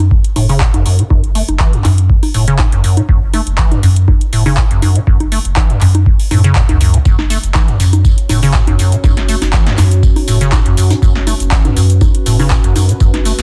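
A dense, heavily limited mix in a small room carries this gritty, driving acid house excerpt in F# minor at 121 BPM, its 16ths lightly swung. A deep, tape-toned electronic kick and an electro analog drum machine with congas, handclaps, metallic hats, shaker and a punchy snare drive it along, while a round, dark analog bass pumps underneath and a squelchy, hollow square-wave acid riff sits up front with lush chorus and a filter sweep across the whole clip. A loose indie drum kit of saturated hi-hat, snare and tambourine slips in quietly in the background at 7.1 seconds, and a moody, detuned analog pad adds sustained chords with chorus and phaser from 7.9 seconds.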